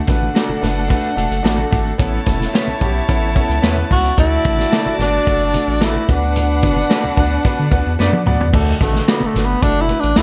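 Uptempo 1960s-style soul with a joyful, danceable feel, where a punchy vintage drum kit with dark cymbals and a thick, saturated sub bass drive a clear grand piano, smooth bowed violin section, soft-handed congas and twangy, slightly broken-up guitar stabs with spring reverb, while a breathy, scooping tenor saxophone enters up front at 3.9 seconds and takes a solo after a drum fill at 8.0 seconds, all in a dark, warm studio sound.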